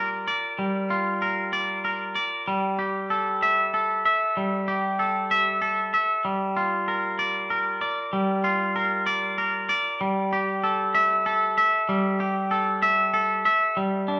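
Cathartic and cinematic, this short rock passage, cut from a longer piece, moves at 96 BPM in a straight 3/4. A twangy electric guitar carries it from 0.0 to 14.2 seconds, picked clean and bright, sitting up front and ranging from G3 to E5. Spring reverb colours the guitar, while a moderate large-studio room adds a sense of space, with the band playing live together in one room. The harmony alternates between Gm7 and A5/G, returning to Gm7 at 6.3 seconds before shifting back to A5/G at 10.0 seconds. The tuning sits slightly below standard, with A4 at 436 Hz.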